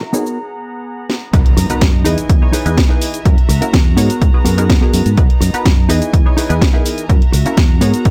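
A punchy, up-front electronic kick lands at 1.3 seconds with the drop in this sunny, feel-good filtered disco house cut at 125 BPM in B major, arriving together with a warm fingered electric bass and a very quiet impact. Already playing from the opening filter sweep and break are a layered house drum kit with cracking snare, hi-hat and cabasa, a funky, detuned sawtooth polysynth comp with chorus and phaser, a dark, clean electric guitar riff, and distant floating strings holding sustained chords with vintage sampler grit. The guitar, strings, synth and bass all pump against the sidechain under a low-pass filter.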